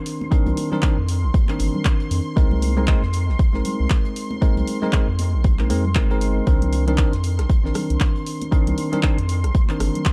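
A swung 117 BPM deep house groove in 4/4 opens this moody C minor excerpt, where an up-front overdriven electronic kick and a round, sine-like analog bass pumping under the sidechain anchor bright, bell-like tine electric piano stabs with digital delay and a silky, detuned string pad shimmering with chorus and phaser, while a punchy overdriven analog drum machine supplies handclaps, hi-hat and rim clicks, high-tuned congas sit in the background and a very quiet, dry 70s kit adds hi-hat and a fat snare over chords moving from Cm9 to Abadd9 at 2.4 seconds and back to Cm9 at 6.5 seconds, all in a dark, small-room production.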